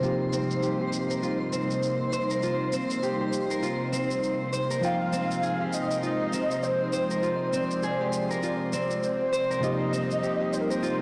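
Organic downtempo excerpt at 100 BPM in F minor with a swung, mystical and meditative feel, where a bright, ringing concert harp sits up front with arpeggios under a filter sweep, over a worn, slightly out-of-tune tine electric piano, a soft airy pad, a faint electronic shaker and a twinkling granular shimmer, joined at 4.8 seconds by a breathy flute-like synth lead with vibrato carrying the melody, all bathed in a lush hall reverb on a blown-out, overdriven recording.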